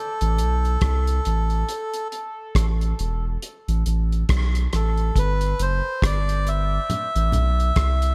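A reedy, breathy melodica carries the melody up front, trailed by dub echo, over a deep, round sub bass and a cloth-damped, thuddy drum kit of tight kick, hi-hat and rim click in this hypnotic, heavy dub reggae piece at 69 BPM in A dorian, with a swung sixteenth feel. The chords move from Am through Esus4, Asus2 and Cmaj9#11/F# before returning to Am at 6.9 seconds, where low-tuned, thick-skinned congas join briefly until 7.6 seconds. The echo-heavy mix sits in a small room ambience and is cut from a longer piece.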